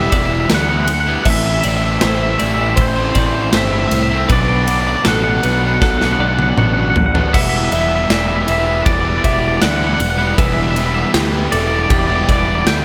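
A twangy, clean electric guitar melody with analog delay leads this cathartic, melancholic post-rock passage in E minor at 79 BPM over twelve-string arpeggios in the background, a double-tracked fuzz guitar riff and a punchy overdriven picked bass, as a big, up-front rock drum kit with bright cymbals drives through an Em7, Am and Bm7 progression, plays a fill from 5.8 to 7.3 seconds, and is then joined by a very quiet, distant, lush bowed string section entering on Em7 at 7.3 seconds, all within light small-room reverb.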